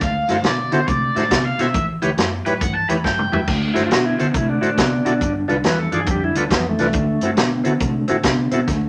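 A raw, bright garage guitar leads this rollicking, laid-back electric blues shuffle, its overdriven and phaser-tinged lead line sitting up front for the opening 3.5 seconds before dropping away. Beneath it, an electric guitar through a small old amp carries a slightly broken-up, compressed riff with a tremolo shimmer, while a reedy tonewheel organ with key click, light overdrive and a slow rotary speaker fills in the accompaniment from 0.3 seconds. A dark, round, foam-muted fingered bass anchors the low end, and a vintage drum kit with a punchy kick, medium-tuned snare, dark cymbals and a rolled-off top drives the swung groove at 138 BPM in D mixolydian, marking the turn into the second section with a fill that ends at 3.5 seconds. The changes move through D9, A7sus2 and G9, and a wet studio reverb gives the whole short cut a lively room feel.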